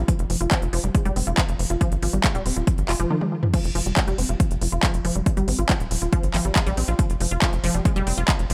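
A driving, straight 4/4 pulse at 139 BPM sets this intense, alien psychedelic trance excerpt in F minor, tuned slightly low to A4 = 437 Hz. An overdriven electronic kick sits up front and hits hardest in the mix, entering at 0.1 seconds together with a layered dance kit of crisp hi-hats, handclaps, toms and crash cymbal with a tape-warm edge. Underneath, a tight sequencer bass blends sawtooth and square waves into punchy, fast-attack filter plucks that decay with a mellow roundness between Eb1 and Bb1. Above it, a lush, detuned unison pluck plays the riff between Eb3 and F4, its short sawtooth stabs pumped by sidechain and trailed by digital delay. A drum fill at 3.1 seconds leads into the drop at 3.5 seconds, which carries the full groove to the end, all in a dry, close sound with little reverb, cut from a longer piece.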